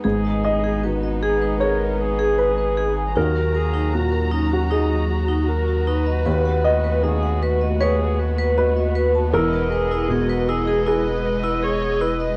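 A dark grand piano, a lone bowed viola, a dark chamber string section and a ringing vibraphone all sound together from the opening of this reflective, longing neoclassical excerpt, with a saturated sub bass arriving a moment later at 0.1 seconds. The pace is rubato in 4/4, and the harmony moves from G#m through D#m and B7/D# to Emaj7. The piano is mellow and intimate, its short sustain and audible action noise lending a vintage character, while the viola plays sul tasto with vibrato, its tone nasal and woody. Alongside them the chamber strings hold soft-attack chords with light vibrato, and the vibraphone's metallic arpeggios, struck with medium hard mallets and carrying a medium motor vibrato, trail through tape echo. Underneath, the thick, triangle-shaped sub bass sits up front with a fast attack and long sustain. Light reverb and the softness of a home cassette recording give the whole excerpt a close, worn intimacy.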